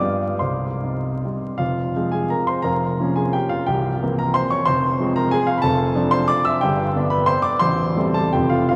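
Bathed in a vast, echoing cathedral reverb with vinyl crackle, this brief excerpt of a wistful, capricious romantic triple-time dance in F minor and 3/4 has a polished, up-front baby grand piano playing solo with dotted rhythms and free rubato at 138-199 BPM, ranging from A0 to E6, with a new passage from 1.6 seconds that wanders through shifting harmonies before settling on an F major chord at 8.3 seconds.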